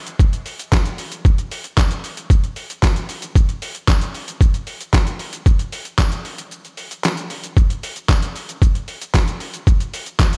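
Pop excerpt at 114 BPM in a straight 4/4 with an energetic, driving mood, built on an up-front, compressed, pitched-down trip hop sampler-style drum kit with a gritty, thumpy kick, medium-tuned snare, handclaps, hi-hat and shaker, joined at 0.7 seconds by a very quiet, jingly tambourine set distant in a large room, with a brief break at 6.5 seconds in a digital ambience.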